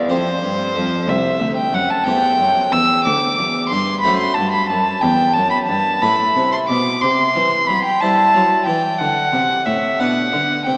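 An up-front, warm solo violin sings a serene, dance-like melody with soft attacks, vibrato and expressive portamento over a brilliant, full Flemish-style harpsichord and a distant bowed cello bass in this brief fragment of a baroque-style sonata movement in 12/8 at 60 BPM, tuned to A4 = 441 Hz and bathed in a 3.2-second church reverb heard through a small-speaker sound.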